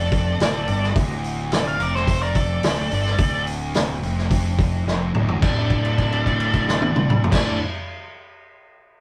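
A straight 4/4 groove drives this smoky, heavy blend of blues rock power trio and southern rock, cut from a longer piece. Up front, the vintage acoustic drum kit pounds through crash, hi-hat, tight kick, medium-tuned snare and toms, its dark cymbals and rolled-off top giving it a gritty, saturated character. Beneath it, a thick, double-tracked fuzz guitar grinds out a low riff while a growly fuzz fingered bass, overdriven, sits at the very bottom. The bluesy overdriven lead guitar carries the dark, distorted melody, with a bright, biting second lead tucked in the background, its overdrive thrown back by a slapback echo. A drum fill at 4.9 seconds ushers in a new section at 5.4 seconds, where the harmony settles from minor onto a bare power chord and a held note rings out to 7.3 seconds. The rough rehearsal-room sound has a short, wet booth ambience and warm saturation.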